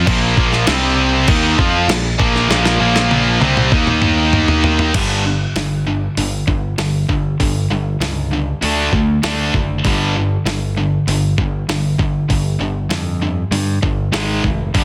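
Hard rock at 98 BPM in G minor, driving and aggressive, this excerpt stacks a crunchy overdriven guitar with spring reverb in the background, a tight distorted guitar riffing up front, and a double-tracked high-gain guitar that drops out at 4.9 seconds, over a punchy, direct picked bass and a gritty, compressed sampler-style drum kit with a thumpy kick, whose fill from 2.5 seconds leads into the second section, all in a dense, heavily limited modern master with light digital ambience.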